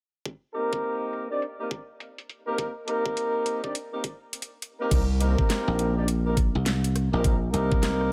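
A swung, knocking kick and a layered dubstep kit with a huge, filtered snare and metallic hats set up a swaggering, funky glitch hop groove, with a filter sweep on the drums through the opening stretch. Mellow horn stabs with light vibrato and octave doubling pump with sidechain ducking through a digital delay over a Cm7 chord, all in a digital ambience. At 4.9 seconds a gritty, saturated synth bass bursts in briefly, and from 5.7 seconds a bright, punchy thumbed slap bass with tube saturation takes over the low end in this fragment cut from a longer piece.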